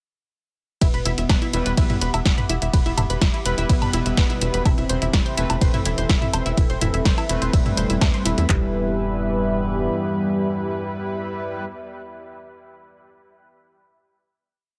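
A deep house drum kit drives this hypnotic, dramatic melodic techno piece at 125 BPM in E minor, its deep, tape-warm kick pounding four-on-the-floor up front with claps and floor tom, layered over a punchy analog drum machine supplying closed hats, snare backbeat, ride, low tom and woodblock. A fat sawtooth lead repeats a mellow riff with vibrato and dub echo, while a tight sequencer bass pulses in sixteenths and a detuned, plucky arpeggio synth runs a 3-step loop drifting against the bar, all breathing with sidechain pumping. Bold brass stabs punctuate the groove, while a dark, detuned pad entering at 4.7 s and a warbling, nostalgic lo-fi pad fill the background over a faint overtone-sweeping drone. The drop moves from Em to Amadd9/E before the drums fall away around 8.5 s, leaving pads, lead, brass and drone to hold a final Em chord in a dry mix.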